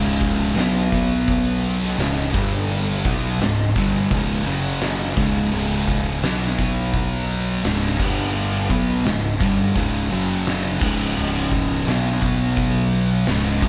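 Stoner and doom metal at a sludgy, heavy 85 BPM in straight 4/4, this short cut from a longer piece rides a chord cycle built on C#5 that turns through B5, G5 and F#5. Three dark, picked fuzz guitars carry the distorted riff from the start, one of them double-tracked, all sitting in the background of the mix. A fingered electric bass growls beneath them with bright, punchy overdriven fuzz, while an oversized low-tuned acoustic drum kit enters at 0.2 seconds, up front and gritty, with a punchy kick, fat snare, dark cymbals and hi-hat in a bright stone room that pumps with saturation. Very quietly underneath, a vintage string machine set to cellos holds slow-attack sawtooth chords with a sub octave, phaser, ensemble chorus and a moving notch. The band plays live in one room with light reverb, giving the whole thing a dense, weighty sound.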